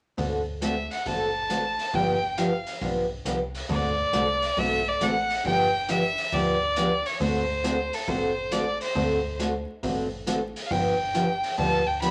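Country western swing with a cheerful, swinging feel, cut from a longer piece. A full-bodied, picked steel-string acoustic guitar sits up front as accompaniment from 0.2 seconds, together with a metallic FM bass with a fast attack and decaying, mellow tone, and a vintage acoustic drum kit of hi-hat and punchy kick with a rolled-off top and a pumping small-room sound. At 0.6 seconds a single clear fiddle enters with the melody, bowed with light vibrato and an airy, intense, slightly boxy character that stays close and forward. The harmony moves between D7 and G7, and a second section begins at 3.7 seconds. A wet studio reverb and a layer of vinyl crackle lend the recording an old-record atmosphere.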